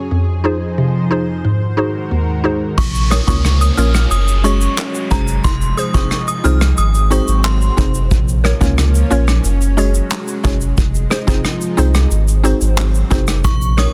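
Dense and heavily limited in a small room, this hypnotic, tough dancehall excerpt at 90 BPM opens on a lush, detuned pad with chorus, phaser and sidechain pumping under a woody, warbling FM mallet pluck, then at 2.8 seconds brings in a thick, saturated sub bass, an up-front vintage brush kit with a punchy kick, handclaps, rim click, shaker and soft-clipped snare, an inharmonic ringing synth chime melody and an electronic downlifter, with a very quiet egg shaker at 13.4 seconds, all over a minor-leaning cycle of Fm7, Ab7, Bbm and Gbsus2.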